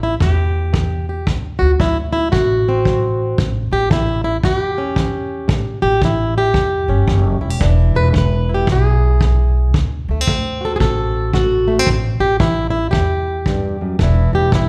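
A swung 4/4 pulse at 113 BPM drives this soulful, rollicking acoustic country blues excerpt, where a boxy, fingerpicked plugged-in acoustic guitar carries the melody up front over a woody, dark pizzicato upright bass and a punchy, rolled-off kick drum played with brushes that enters at 0.2 s, all moving through A, D and E seventh chords inside the 1.4-second glow of a recital hall.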